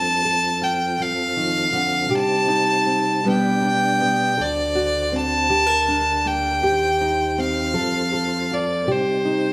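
Haunting and wistful, this folk piece in C dorian moves at a slow 53 beats per minute in a straight 6/8, cut from a longer performance. A single clear fiddle carries the melody up front, bowed with a light vibrato and an intense edge. Beneath it, a fingerpicked steel-string acoustic guitar supplies the accompaniment with a dark, woody tone from old strings. A mellow tonewheel organ holds sustained chords with a round, lightly overdriven sound, chorus vibrato, audible key click and a slow rotary speaker. The band plays live together in one large studio, wrapped in a moderate reverb, as the chords move from F through Cm, G/B and D7 and back to Cm across the 9.5 seconds.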